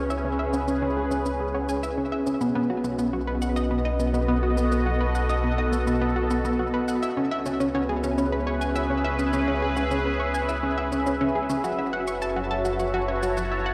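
Ambient, sequencer-driven space music in C# minor at 104 BPM, mysterious and expansive, cut from a longer piece and moving from C#m7 through B7 and back before reaching F#m7 near 11.6 seconds. A bright, resonant, detuned pad holds sustained chords up front with slow attacks and long releases, while a round analog pluck with a fast attack and short decay repeats a chorused riff through cassette tape and tape echo, and a deep, dark analog bass sustains beneath them. Faint electronic shaker and woodblock with tape echo sit far back, all bathed in a huge, wet reverb with a 9.4-second tail that sounds as though it is played through a big sound system in a bare room.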